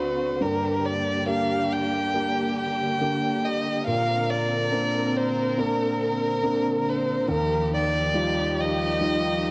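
Emotional and heartfelt, this slow pop ballad excerpt at 70 BPM in Eb major sets an expressive solo violin, bowed with soft attack, vibrato and portamento, over an intimate concert grand piano with deep bass, long sustain and audible action noise, while a lush, smooth studio string section holds sustained chords through Gm, Bbadd9 and Ebadd9, all bathed in a moderate plate reverb and the warbling pitch drift of worn cassette tape.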